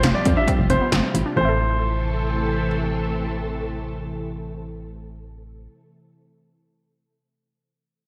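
Synth-pop in A minor at 135 BPM, this short, melancholic and cool fragment is cut from a longer piece and set in a lush hall reverb with bright, 1980s-style digital production. Punchy electronic pad drums with a gated snare and metallic hats sit up front but play only until 1.2 seconds, while a solid FM bass, round and mellow with a fast, decaying attack, holds the low end. A silky string machine carries sustained chords through an ensemble chorus. Behind it, a warbly, dusty pluck with a detuned, lo-fi sawtooth edge plays arpeggios through chorus and digital delay until 6.3 seconds. An intimate concert grand piano, with audible action noise, adds a second line high in its register through its own delay from 0.1 to 2.7 seconds. The harmony moves from Fsus2 to A minor at 1.4 seconds.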